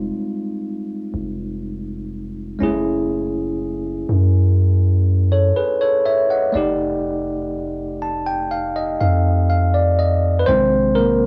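A home cassette recording with small-room ambience carries this sensual, moody contemporary R&B passage at 61 BPM, where a bright, bell-like tine electric piano with plate reverb sits up front over Fm9, Gbm9 and F13 chords and adds a fill from 7.5 to 10.5 seconds, while a deep, sine-toned 808-style bass holds long, decaying notes beneath it.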